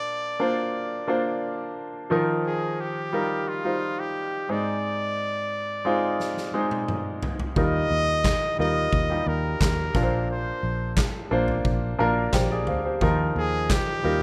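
Heard through a rough home-demo mix with moderate studio reverb, this hopeful, uplifting piano-driven pop fragment sets a bright, up-front solo trumpet melody over clear concert grand piano chords, both bathed in plate reverb, until a big-room acoustic drum kit of handclaps, punchy kick, snare and toms enters with a fill at 6.2 seconds, a dark, round, foam-muted electric bass joins at 7.6 seconds, and the piano adds its own fill at 11.7 seconds.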